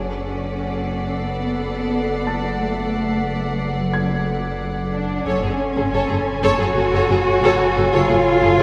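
Up front, a dark, expressive cello section carries the bass with vibrato and portamento in this uneasy, mysterious suspense film-score excerpt at 90 BPM, moving from Bm7/F# to F#madd9 at 5.3 seconds, as a woody double bass section and a deep, punchy sine sub bass drone hold F#1 beneath violins (a smooth background melody, a focused second line and a high expressive background texture), a distant viola section, dark French horn chords, ethereal glassy harmonica chords and a mellow felt-muted upright piano, all bathed in a wet cathedral reverb.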